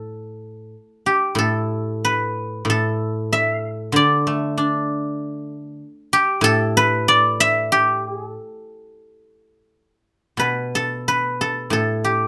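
Serene and elegant, this short passage cut from a longer Chinese traditional piece features a solo guzheng playing freely in rubato, hovering around 84-98 BPM in 4/4 and set in the A shang mode. The guzheng carries the whole 12.3 seconds alone, its bright, silvery tone coming from fingerpicks and ringing out across a range from A2 up to E5. Sitting up front in the mix, the instrument is framed by a moderate studio reverb that lends a short halo to each plucked note. The opening section unfolds until about 10.4 seconds, when the music shifts into a new section that carries on to the cut. The sound has the rough, unpolished quality of a home demo, giving the performance an intimate, unadorned character.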